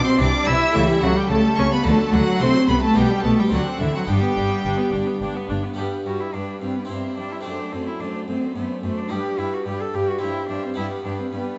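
A solo cello, up front with expressive vibrato and portamento, carries the melody in this lively, festive excerpt from a baroque-style concerto movement in G major, moving at 108 BPM in 3/4. Above it a violin section sings a smooth, even high line while a second violin section and a lush viola section fill in behind. A full-voiced, plucked harpsichord, a distant cello section and a dark double bass section (which drops out at 5.6 seconds) round out the accompaniment, all set in a wet recital hall reverb.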